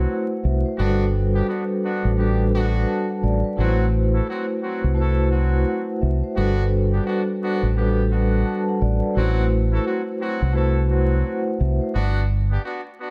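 A round, punchy fingered electric bass sits up front in this reflective yet tough hip hop excerpt at 86 BPM in A dorian, its dark, direct tone anchoring a lazy 16th-note swing over alternating Am69 and Gmaj9 chords. A mellow vibraphone played with soft mallets rings with slow motor vibrato and a vintage, band-limited cassette character, while a smooth-topped trumpet section adds warm ensemble stabs with light vibrato and slapback echo. The vibraphone drops out at 12.0 seconds for a brief break, the bass follows at 12.6 seconds, and the trumpets carry on to 13.1 seconds, all within a small-room ambience dusted with vinyl crackle.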